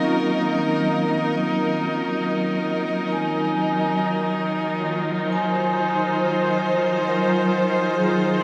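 A straight 3/4 pulse at 68 BPM carries this melancholic, spacious ambient passage in Eb dorian, where an up-front string section holds rich, smooth bowed chords with vibrato, a metallic vibraphone played with medium hard mallets rings out arpeggios through a diffuse delay and fast motor vibrato, and a nasal, resonant drone with moving overtones, chorus and its own reverb sits in the background until 4.1 seconds, the whole bathed in a cathedral reverb as the harmony moves from Gb6/Eb to Ebm69 at 4.0 seconds.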